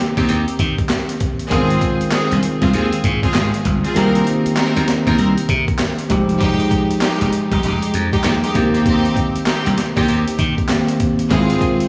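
Confident and bouncy, this short cut from a longer new jack swing R&B track moves at 98 BPM in 4/4 with a 16th-note swing. A bell-like tine electric piano carries the accompaniment through a lush chorus, moving over Eb6, Ab6, Cm7 and Fm9 chords. Bright studio strings, bowed as an ensemble with light vibrato and a smooth top, punctuate with intense stabs that trail digital delay and slapback echo. A glassy slap bass adds a growly, punchy low end. The gritty, tape-toned sampler-style breakbeat kit sits up front with a thumpy kick, medium-tuned snare, hi-hat and handclaps, and the kick drops out between 4.0 and 4.6 seconds. The mix sits in a concert hall reverb that gives a big arena sound.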